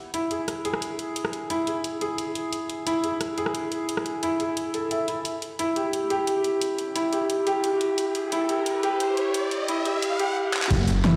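A mellow, felt-muted upright piano plays intimate arpeggios through a low-pass filter and digital delay in this dreamy, melancholic liquid drum and bass build-up at 176 BPM, moving from E to E minor at 5.3 seconds over an up-front, overdriven pop drum kit with a fat snare, handclaps, shaker, rim clicks and crash, while an electronic riser and downlifter enters at 6.2 seconds and, at 10.7 seconds, a deep, rumbling detuned saw bass arrives with a gritty, thumpy electronic kick and a very quiet, crunchy breakbeat kit, the whole mix sitting in a wet, stony reverb as this cut from a longer piece ends.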